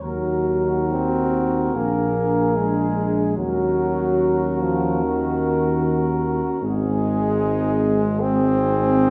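Classical brass band music in a hymn-like vein, this serene, lyrical passage moves at 67-77 BPM in 4/4 with a rubato feel, and it is cut from a longer piece. A dark, distant trumpet section carries the melody, while a mellow flugelhorn with vibrato sings a second line in the background. Up front, a clear, close-miked trombone gives the accompaniment its most present voice, joined by a smooth-topped euphonium sitting further back and a tuba with light vibrato and a soft attack holding the bass. The harmony moves from Ebm through Bb7 and Ebm7 before settling on Ab at 6.6 seconds. The whole ensemble plays together throughout the 9.1 seconds, heard from further back in a recital hall whose reverb lingers for 1.6 seconds and leaves the sound rounded and soft in its upper reaches.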